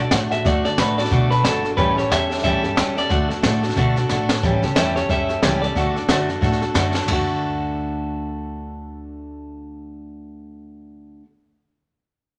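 A twangy, slightly broken-up electric guitar carries the melody over a bright, full-bodied picked acoustic guitar and a woody, thumpy upright bass in this rollicking, upbeat rockabilly excerpt, swinging at 181 BPM in D major between D and A7. Brushes on a polished drum kit with dark cymbals, a high-tuned snare and a boomy kick join at once, adding a fill around 4.1 seconds, all set in an airy large studio room. The electric guitar drops out at 6.7 seconds and the drums at 7.2, leaving the up-front acoustic guitar and bass to carry on to the end.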